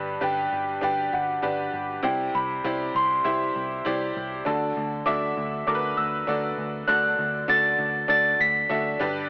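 A straight, steady 4/4 pulse carries this uplifting, hopeful piano-driven pop fragment, cut from a longer piece and running 9.3 seconds. A bell-like celesta plays the melody up high, its sweet, delicate tone coming through a boxy small room with hard felt hammers and a cassette-tape color. Beneath it, a bright upright piano plays the accompaniment, worn and woody, slightly detuned, with audible action noise that makes it feel intimate and up front, and it also carries the cassette-tape character. A vintage muted picked electric bass sits lower in the mix, dark, round and punchy with an amped, foam-muted sound. The harmony moves from G to Cadd9 at 2.0 seconds and on to D at 4.5 seconds, all wrapped in light reverb and a home-cassette, AM-radio sound.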